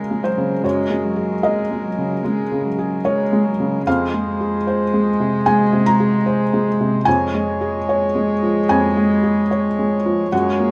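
A felt-muted upright piano, soft and up front with audible action noise, carries the accompaniment in this tender, intimate neoclassical excerpt in Db major at a rubato 74 BPM, moving over Gbadd9, Fm and Db/F while a distant, floating solo cello bowed sul tasto traces a second line and a reedy, breathing pedal harmonium holds sustained chords, all set in a moderate large-studio reverb.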